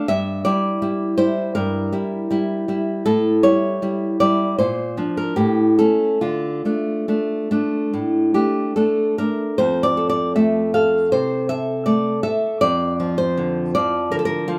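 A romantic solo classical guitar piece, intimate and melancholic, moves with a rubato feel at around 69-83 BPM in 4/4, opening in D minor over chords such as Em7b5/G, A7 and Bb before settling on Dm. At 9.6 s it turns toward F major, and this brief excerpt cuts off at 14.6 s. The fingerpicked nylon-string guitar sits up front with a warm, full-bodied sound and fresh strings, spanning F2 to F5 within light reverb that suggests a single room.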